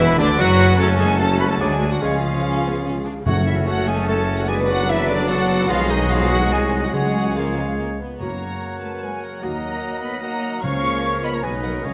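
Urgent and stormy, this classical orchestral excerpt in brisk 3/4 at 148 BPM moves from F# minor to F# major at 5.7 s, with lush bowed violins carrying the melody over a second violin line, airy flutes, a clear oboe and clarinet, while a soft-attack mellow bassoon and smooth violas accompany, mellow horns and a vintage-toned trombone section hold very quiet chords, a clear trumpet adds stabs, a rich double bass section, background cellos and a distant tuba form the bass, and round soft-mallet timpani enter at 2.0 s and again at 6.9 s, all set in a moderate scoring-stage reverb.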